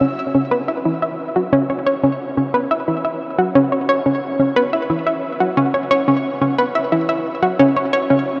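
A round, up-front analog pluck with a sub-octave weight, fast attack and short decay plays alone from 0.0 to 8.2 seconds, shimmering through chorus and delay into a huge, dark reverb tail in this expansive, mysterious ambient fragment cut from a longer piece.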